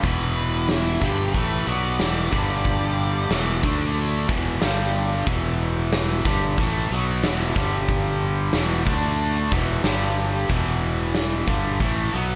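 A driving, confident classic rock excerpt opens with everything at once: two bright, picked electric guitars play a riff built on E5, G5 and D5 chords, one distorted and compressed, the other overdriven and up front. A dark octave-fuzz lead guitar adds a distorted second line with digital delay, dropping out at 3.6 s, while a growling fingered bass, overdriven and forward in the mix, holds the low end. An acoustic rock kit with a punchy kick, medium-tuned snare and hi-hat plays in a bright stone room until 12.0 s, all set in studio reverb.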